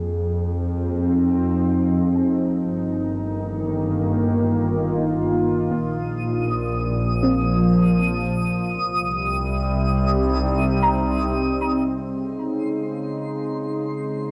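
This ambient excerpt from a longer piece opens with three parts in a gentle triple metre: an evolving wavetable pad holding sustained chords, a soft, round pluck fading in with arpeggios, and a bowed double bass section underneath. The pad is mellow and full-bodied, warbling with chorus and its own reverb, and a filter sweep runs across it through the first 11.9 seconds. The pluck sits darker, its detuned, decaying notes coloured by ensemble chorus and tape echo, while the bass section sounds rich and focused, with vibrato and a smooth top. At 6.2 seconds a twinkling granular texture enters high above, sparkling with an octave-up shimmer and built-in reverb. The bass stops at 11.8 seconds and the pluck soon after, leaving pad and texture on a final suspended chord, with a weightless, peaceful mood and the softened grain of a home cassette recording in a small, wet booth.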